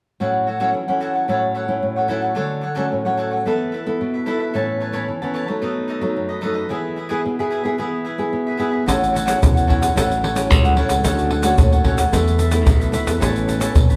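A crisp, bright cavaquinho sits up front alongside a fingerpicked classical nylon-string guitar, whose finger squeaks can be heard, in this joyful, playful samba and choro excerpt, the two moving through chords like A6, Dmaj7 and B7. At 8.9 seconds a growly, bright fingered electric bass joins with close, up-front acoustic percussion of egg shaker, tight surdo and pandeiro. The band sounds as if playing live together in one room, bathed in a wet, large studio reverb.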